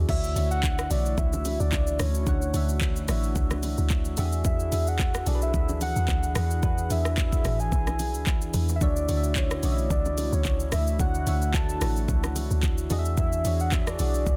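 A relaxed, soulful amapiano groove with a light sixteenth-note swing, this short passage from a longer track moves gently between two lush chords. The deep log drum bass sits prominently in the mix, its round, dark, percussive notes striking quickly and decaying, while the deep house drum kit stays up front with a deep kick, soft-toned hats, handclaps, rim clicks, shaker, toms and a crash cymbal. Soft, mellow electric-piano-like synth keys carry the accompaniment with a chorused shimmer and a filter sweep, as a hollow, flute-like pad holds sustained chords in the background, pumping with the sidechain. Just after the start, an octave-layered synth lead enters with a full, dusky tone and vibrato, trailed by tape echo. Very quiet congas and bongos add bright, close, dry hand percussion beneath it all, and the dense, heavily limited master keeps the whole sound dry and tight.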